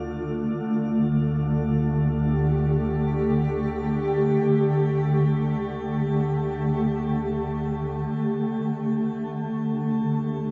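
Dark ambient drone, dark and cavernous, where a calm, organ-like sine drone with ensemble chorus fades in underneath over the first 8.1 seconds while a bright, up-front granular cloud pad holds blurred, detuned, evolving chords with shimmer reverb, all soaked in a huge, dreamy reverb as the harmony moves from D minor to an open D5 at 8.1 seconds in this fragment of a longer piece.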